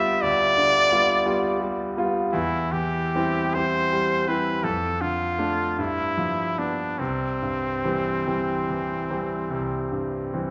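Tender and serene, this romantic classical duo for trumpet and grand piano moves in a flexible rubato 12/8 at roughly 46-59 BPM, counted in dotted quarters, and settles in C major. The bright, punchy trumpet sings the melody up front with a light vibrato, while the brilliant, open grand piano supplies accompaniment, both playing throughout this 10.5-second passage cut from a longer piece. A reverberant recital hall with a 1.4-second decay surrounds the pair as the harmony moves from G7/D through C/E, Dm/F and G7 to rest on C at 7.0 seconds.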